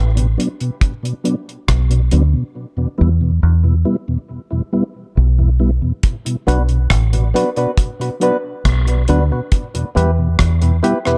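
A straight, unhurried 4/4 dub reggae groove sits under this meditative, heavy fragment of a longer piece, with the reggae drum kit playing hi-hat, a tight, dry kick and rim click up front. The fingered electric bass carries the low end with a dark, round, foam-muted tone that is punchy and direct, moving between B minor and E minor. A mellow tonewheel organ supplies soft, flute-like accompaniment, coloured by chorus vibrato, a slow rotary speaker and tape echo. The opening six seconds form a break, and at 6.5 s a percussive organ stab enters with a hollow, nasal tone and a fast attack that decays through chorus and tape echo. The mix is echo-heavy and set in a small room ambience, keeping the parts close and up front.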